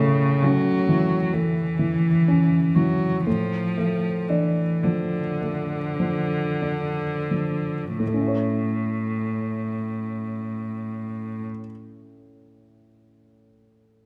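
A single bowed cello sits up front with a rich, smooth tone and vibrato, carrying an even second line in its low register. Alongside it, a dark, mellow baby grand piano provides the accompaniment in this slow, serene romantic movement for piano quintet, cut from a longer piece. The time is elastic and rubato, easing back through the first 8 seconds as the harmony moves from A to Dm/A before settling on A again at the start of a contrasting passage. The cello falls away at 11.4 seconds, and the piano carries on alone until 14.1 seconds. A stone room reverb wraps the parts in a wet tail that lends the whole a warm glow.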